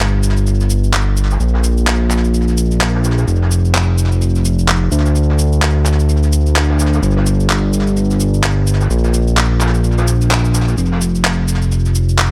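Awash in studio reverb, the mix is heavy with echo and has a joyful, feel-good glow in this short cut from a longer piece of piano house at 128 BPM in 4/4, with the 16ths swung at 59% and the tuning set to A4 = 443 Hz. A fat analog bass sits up front for the whole 12.3 seconds, its detuned sawtooth tone thick and saturated, with a fast attack and sustained notes moving between F1 and D2. Layered electronic cabasa and handclaps run alongside it from start to finish, produced and tape-warm, and carried by tape echo. Further back, a jazz brush drum kit plays hi-hat and a medium-tuned snare with brushes. Its acoustic kit sounds distant and roomy, filtered and treated with tape echo, so it adds a soft haze of room sound beneath the bass.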